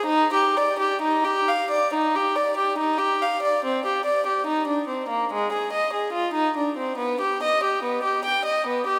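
A lone, close-miked violin with a nasal, gut-string, period-style tone and an airy bow plays a radiant, flowing baroque-style suite movement in a free, rubato 4/4, set up front against a wet church reverb in this brief fragment cut from a longer piece.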